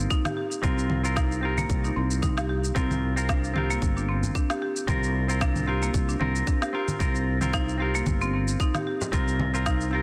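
Earthy and hypnotic, this organic downtempo excerpt moves at 113 BPM in 4/4 with a gentle 16th-note swing over Cm7, Gm and C7(no3) chords. A growly, up-front fretless bass with sidechain pumping and a tight electronic kick anchor the groove beneath electronic shaker, congas and a woody snare. A clean, picked semi-hollow guitar, bright yet filtered, pumps and repeats through tape echo while a vintage-sounding, band-limited marimba plays hard-mallet arpeggios with its own echo, and a small, soft-handed frame drum slips in around 9.0 s in the background, all set in light reverb with a dense, heavily limited master.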